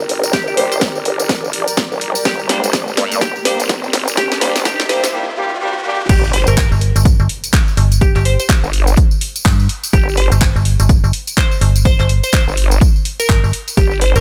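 Light reverb and digital ambience frame this aggressive, swaggering bass house excerpt at 125 BPM in G minor, swung on the 16ths, with a punchy, overdriven electronic kick up front, a house kit of cracking snare, handclaps, hi-hat and crash cymbal, and a jingly, close tambourine throughout. A nasal, saturated vowel-sweep wobble bass sits under a crystalline wavetable pluck with delay, while an ethereal pad and a dark, distant horn section with octave doubling fill the build-up as a background riser leads to the impact at 6.1 seconds. At the drop the pad and horns have fallen away, and a metallic FM bass enters up front at 6.5 seconds.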